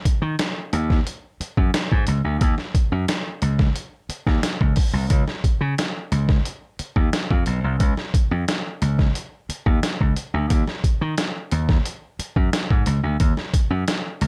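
A bright, punchy electric slap bass and a gritty, pitched-down sampler-style drum kit with a thumpy kick, medium-tuned snare and hi-hat both come in up front at 0.1 s, driving a sly, straight funk groove at 89 BPM in 4/4, with the bass ranging from B1 to D#3, the compressed drums carrying a large-room sound, and light reverb over this fragment cut from a longer piece.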